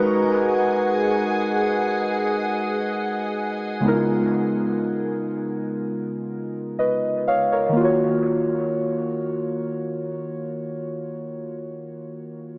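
Muted, felt-like synth keys sit up front through this late-night R&B fragment, their soft, dark tone carrying a chorus shimmer and a dub echo as they play the accompaniment until 12.6 seconds. A glassy FM pad sounds alongside them from the start, holding ethereal chords with an ensemble chorus and its own reverb, then stops at 3.8 seconds. A thumb-plucked nylon-string guitar, deep and classical in color, offers barely audible arpeggios in the opening half second. The harmony moves from Abm7 to Db13 and arrives on Ebm7 as a second section begins, giving the piece a longing mood. Light reverb and digital ambience wrap an echo-heavy mix with a small-speaker sound.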